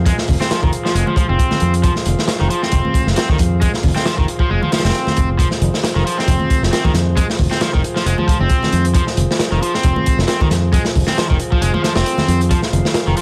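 A crunchy, gritty breakbeat drum kit drives this energetic, funky breaks excerpt at 135 BPM with a 16th-note swing, its tight kick, medium-tuned snare and hi-hat sitting saturated and up front with a rolled-off top, while background congas add light percussion. A bright, fingered electric bass holds the low end on a steady F minor, and a picked, overdriven guitar riff comes through a low-pass filter, tape echo and 12-bit sampler grit. Behind them a fat, percussive tonewheel organ sustains chords with key click and a stopped rotary speaker, pumping against the beat, all framed by small room ambience and vinyl crackle.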